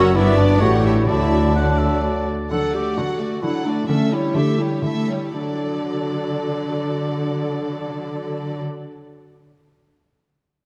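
This quick, lively classical-period orchestral movement in D major moves in 3/4 at 115-136 BPM with a rubato feel, slowing down from 1.8 to 5.4 seconds, and it is cut from a longer piece. A rich violin section carries the melody with expressive vibrato, while a second violin section, focused and bowed, adds a supporting line and the violas fill the middle with a smooth top. The cellos sit up front with portamento, anchoring the bass throughout. Woodwinds crowd the opening moments: a bright, present oboe, a hollow silver flute soft in the background, a dark, distant bassoon and a mellow French horn section holding very quiet sustained chords, with the double basses reinforcing the low end before they all fall away by about 2.5 seconds. A mellow, roomy clarinet continues its second line to the end, as the harmony moves from G through A7 to D and settles on D at 5.4 seconds, all bathed in a wet, resonant concert hall reverb.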